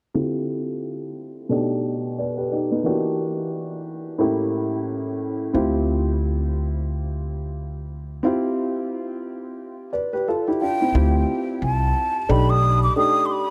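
This smoky, nocturnal hip hop excerpt opens on a dark upright piano with a woody, vintage tone and audible action noise, muffled by a low-pass filter that sweeps across its first 10.9 seconds. The groove sits at 89 BPM in 4/4 with a swung sixteenth-note feel, moving through dusky jazz chords like Dm11, B7alt and A7b9 in D dorian, tuned slightly below standard pitch. A pizzicato upright bass with steel strings joins at 5.5 seconds, holding a low, woody register. At 10.6 seconds a breathy silver concert flute arrives with the melody, its hollow, soft-attacked tone carrying vibrato and trailing delay. The whole mix is soaked in a huge ambient reverb that gives it a dreamy, drifting atmosphere, even as each part sits up front.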